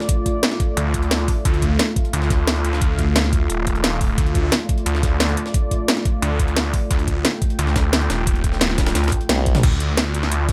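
Tense and mechanical, this cut from a longer dark technical drum and bass track opens straight into the drop, sitting on a D minor chord with a straight 4/4 feel. A dark, full-bodied analog pad of detuned sawtooth and triangle tones with a sub octave holds slow-attack chords throughout, its chorus-thickened sound pumping against the sidechain. An up-front electronic kick with a knocking, tape-warm thud drives the beat alongside a layered drum and bass kit of cracking snare, metallic hats, crash and toms, while a very quiet, gritty, pitched-up jungle sampler-style kit adds a compressed, medium-tuned snare and hi-hat beneath. From 0.8 seconds a snarling distorted saw bass growls in the low register, bright and aggressive with detuned unison, tube saturation and a moving notch. At 9.3 seconds a drum fill and band accent arrive as a chorused formant-sweep wobble bass briefly wobbles on a single note until 9.6 seconds. 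The mix is dry, with little reverb.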